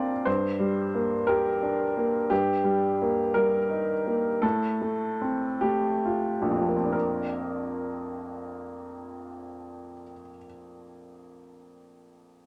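A clear upright piano plays alone in this tender, hopeful neoclassical minimalist fragment, cut from a longer piece and lasting about 12.5 seconds. Its woody, natural tone sits up front and intimate, with audible action noise and a long sustain, spanning from deep bass notes up into the high treble. The playing moves in 6/8 with a rubato feel, slowing down between 1.3 and 6.9 seconds as the harmony passes from Gm through Eb/G to F/A. At 6.9 seconds a new section opens on a Bbadd9 chord, bringing a sense of arrival. A moderate studio reverb gives the piano a modest sense of room around it.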